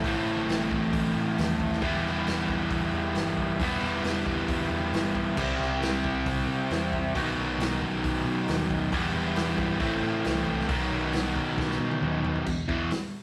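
Blues rock power trio with a southern rock edge, this brooding, smoky excerpt at 135 BPM in E minor sets an up-front, double-tracked distorted guitar riff over a round, dark hollow-body picked bass and a vintage kit with a punchy kick and dark cymbals, moving from Am through Em, C and B to land on E5 after a drum fill at 11.6 seconds, all wrapped in a rough rehearsal-room sound with tube saturation and wet stone-room reverb.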